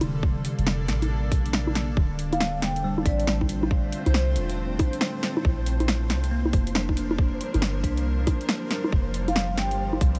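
A tight, up-front electronic kick anchors this rainy, nocturnal future garage cut from a longer piece, set in D minor at 138 BPM with a swung 16th feel, alongside a deep, round 808-style bass and a layered garage kit of bongos, metallic hats and a woody snare, all in a small room. A bell-like tine electric piano with phaser and digital delay plays until 9.0 s over a blurred, evolving granular cloud pad, with the piano, pad and bass all pumping to the sidechain. A mellow vibraphone with soft mallets and slow motor vibrato adds delayed phrases from 2.3 s, a flickering, grainy texture hovers in the background from 2.5 s, and vinyl crackle and light reverb colour the whole recording.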